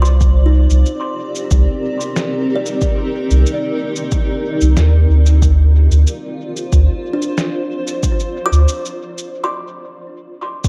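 A straight 4/4 groove anchors this meditative, deep slice of ambient dub, driven by an up-front, overdriven electronic kick with a small-room character, beneath a muffled, pitched-down sampler shaker and snare carrying dub echo and a tape-tinged softness. A round, soft sub bass holds the low end under a blurred, evolving granular pad that drifts from Cm9 to Dm7, while a woody kalimba threads thumb-plucked arpeggios through tape echo. The bass drops away at 8.7 seconds, and a brief break from 9.3 seconds leaves the pad, kalimba and drums hanging in light digital ambience.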